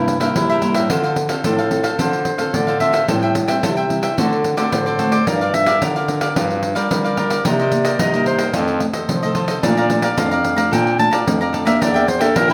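Nostalgic and bittersweet, this samba-choro fragment features a clear clarinet with light vibrato and a soft, jazz-style attack taking a solo from 0.9 s, over a vintage, classical-style bass clarinet line, crisp picked cavaquinho, a small fingerpicked nylon-string guitar and a jingly, up-front pandeiro played with hard hands, in the moderate reverb of a large studio.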